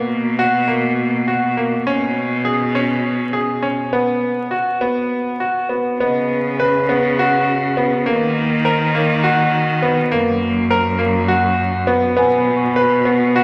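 Shimmering and hopeful, this contemporary chamber excerpt in an uneven 7/8 sets a bright, up-front concert grand piano, its worn tone and audible action noise carried in arpeggios, over a clear, focused bowed cello bass line sung with vibrato, while a delicate, bell-like celesta enters in the background at 6.0 seconds, all washed in a reverberant concert hall with vinyl crackle.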